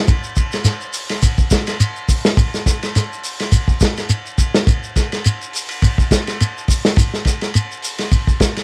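Afrobeat at 104 BPM in 4/4, this short cut from a longer piece carries a defiant, intense mood, with a light swing on the sixteenths giving the groove a slight lean. A soul drum kit runs from 0.1 to 8.6 seconds, laying out kick, snare, hi-hat and ride; its tight kick and medium-tuned snare sit up front, while dark cymbals and a rolled-off top give the kit a warm, roomy character with a touch of cassette tape grit. A shekere plays across the same span, sounding grainy and mellow, close and dry against the drums. The whole take has the feel of a home recording on cassette, touched with light reverb. It stays in a single section throughout.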